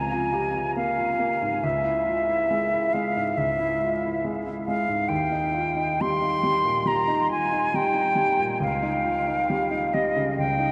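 An airy silver concert flute with vibrato and a soft attack sings a lyrical, tender melody up front over a clear concert grand piano with deep bass, in a romantic classical duo at a rubato 69 BPM in 4/4, moving through Bbm7/Db, Dbm, Eb and Eb7/Db in a short 10.7-second passage cut from a longer piece, set in a vast, echoing space with a huge, wet reverb and a layer of vinyl crackle.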